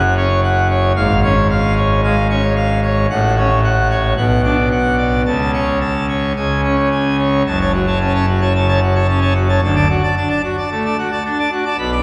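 A straight 4/4 pulse at 111 BPM drives this dramatic, majestic classical organ toccata in F# minor, a 12-second passage cut from a longer piece. A solo pipe organ on full organ carries the whole piece, its mixtures lending a brilliant edge to a romantic voicing that spans F#1 to B5. The organ sits up front, yet a wet church reverb with a 2.7-second decay places the listener further back in the room. The harmony moves from C#/G# through F#m/A, Bm and A/C# toward C#5 at 6.4 seconds, before a new section opens on F#m at 7.5 seconds and turns to D at 9.6 seconds.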